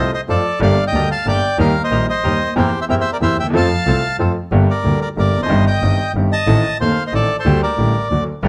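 Sultry and dramatic, this brief tango excerpt in 3/4 at 184 BPM moves with a rubato feel, settling into G minor from 4.5 s, as an up-front, dark, reedy bandoneon carries the melody in plate reverb over a clear, woody, vintage upright piano and a distant, floating bowed double bass played sul tasto, while a second, airy and bright bandoneon adds background stabs until 4.3 s and returns briefly at 8.4 s, all within a dark, warm production with light reverb whose chords pass through Adim and Dsus4 before resolving to D.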